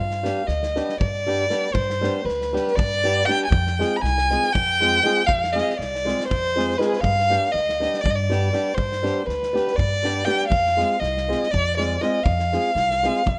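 A bowed violin carries the melody up front from the start, singing with vibrato and portamento over a woody pizzicato upright bass, while an acoustic drum kit with a punchy kick and bundle-stick snare and a fingerpicked flamenco guitar with fresh strings join within the first fraction of a second. This restless, virtuosic Balkan wedding-band folk excerpt runs in 7/8 at 240 BPM in eighths, speeding up as the harmony alternates between G and F minor in F dorian sharp 4, tuned to A4 = 437 Hz. The sound is a rough home demo with small room ambience and light reverb, and the guitar stops just before the others at 13.2 seconds.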